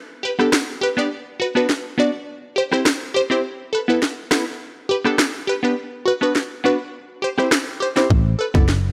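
Hypnotic and tough, this dancehall excerpt moves at 103 BPM in a straight 4/4, centred on A dorian. A digital wavetable chord stab carries the harmony from the start, its crisp, detuned triangle tone wave-folded with a filter pluck, a moving notch and a fast, decaying attack that sits bright and up front. An electronic island pop drum kit follows almost at once, with a tight kick, a sharp snare and rim clicks placed close in the mix. The chords cycle through G, Bm, C and Asus2 twice over a break. At 8.1 seconds a picked electric bass finally lands, dark, round and punchy, its foam-muted low notes hitting directly up front under light reverb.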